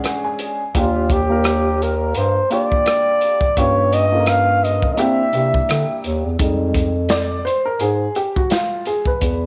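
A crunchy, saturated breakbeat kit of tight kick, snare, rim click and hi-hat swings its 16ths at 85 BPM beneath this nocturnal, cool jazz-hop excerpt in F dorian, where a veiled bucket-muted trumpet breathes a whispered, scooped melody with slapback echo until 6.0 s, a breathy bass clarinet enters at 0.8 s with punchy, close-miked bass lines, and a worn, slightly detuned upright piano with audible action noise opens with a short fill before taking a mellow solo from 6.4 s, all wrapped in light reverb and small-room ambience.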